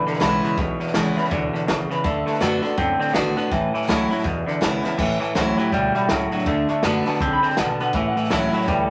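This retro, rollicking rockabilly excerpt in A major swings along at 163 BPM, opening straight away on a clean, up-front twangy electric guitar riff and a fresh-stringed, full-bodied dreadnought acoustic guitar, while a slightly broken-up, compressed melody from an electric guitar through a small old amp plays above them, dropping out at 3.0 seconds and returning at 5.4. Underneath, a woody, thumpy pizzicato upright bass with gut strings sits in the background, and a dry compact cocktail kit adds dark cymbals, a high-tuned snare and a punchy kick, rolling into a drum fill at 4.8 seconds. From 5.0 seconds a clean electric guitar solo enters and carries through to the end, all set in a wet studio reverb.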